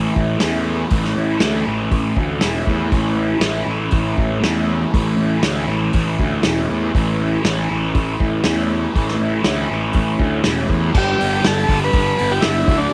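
This rowdy, swaggering garage rock excerpt sounds like a home recording made on cassette, with a light reverb. At 120 BPM in a straight 4/4 feel in A mixolydian, tuned slightly flat of standard pitch, a crunchy, double-tracked overdriven electric guitar drives a picked riff through a phaser, sitting up front alongside a growly, bright fuzz bass played with a pick. A vintage acoustic drum kit comes in at 0.2 seconds in a small, pumping room, warm with a rolled-off top, with a punchy kick, medium-tuned snare, hi-hat and dark crash cymbals. The opening stays on A until 10.9 seconds, when the harmony shifts to G. An overdriven combo organ joins at 11.0 seconds with a buzzy melody colored by light vibrato, and the clip ends at 12.9 seconds, cut from a longer piece.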